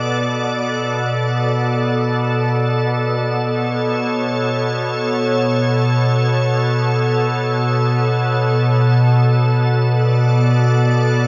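In free time, this short ambient passage in B minor, tuned to A4 = 436 Hz, drifts in a reflective, spacious mood, taken from a longer piece. A soft, organ-like pad plays alone throughout its 11.3 seconds, pure and detuned with a slow attack, long release and a bright, up-front presence, its ensemble chorus and delay set inside a huge, wet reverb. The harmony moves from Bm7 to A/B at 3.0 seconds before settling back on Bm7.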